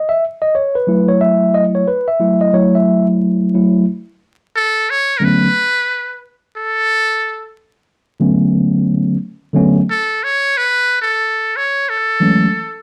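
Swung 16ths at 90 BPM in 4/4 set a mellow, nocturnal hip hop groove in B minor, where a clean tine electric piano heard through its built-in speakers opens on F#m7 before a buzzy, thin metal-muted trumpet with light vibrato, a soft attack and a slapback echo enters up front at 4.6 s, carrying a jazz-style melody over Bm9 and then F#m9 at 10.5 s, all wrapped in a wet studio reverb and vinyl crackle in this cut from a longer piece.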